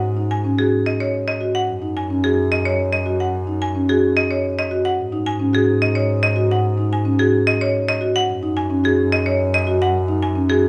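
In a straight 3/4 at 109 BPM, this hypnotic, bright minimalist classical excerpt alternates between G#5 and F#sus2 chords. A hard-mallet marimba carries the melody from G#4 to G#5 with a crisp, percussive bite, while a soft-mallet marimba joins at 0.2 seconds with round, mellow arpeggios in a lower register. A dark, bowed double bass holds the low end between F#2 and G#2 with vibrato and portamento, all three parts sitting up front in a large studio with moderate reverb.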